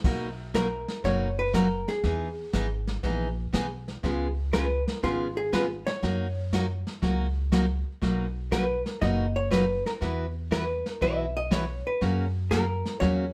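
Western swing country at 120 BPM in B major, this cheerful, down-home excerpt swings its eighths over a chord sequence that moves from Bmaj7 through Emaj7, C#7 and F#6 before closing on F#. A picked dreadnought acoustic guitar carries the accompaniment beside a woody, thumpy pizzicato upright bass and a vintage brush kit with a punchy kick, medium-tuned snare and dim, rolled-off cymbals. From 0.6 seconds a clean, compressed hollow-body electric guitar sits up front with the melody, all captured as a band playing live in one room with moderate studio reverb.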